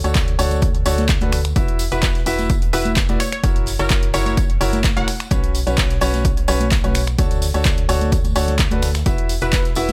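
A straight groove drives this uplifting, euphoric piano house excerpt, built on an overdriven electronic kick and a tape-warm analog drum machine of finger snaps, handclaps and hi-hat, with tambourine and congas tucked in the background and a very quiet acoustic jazz kit adding natural hi-hat and snare. A brilliant concert grand piano riff and a hollow, organ-like FM bass both pump through sidechain compression, with delay on the piano, as the harmony moves through chords such as Dmaj7, Esus2, F#7 and Bsus2. A crystalline, detuned wavetable pluck with chorus, delay and a filter sweep carries the melody from 1.9 to 5.1 seconds and returns briefly at 9.4 seconds, all set in a studio reverb with a faint mains hum.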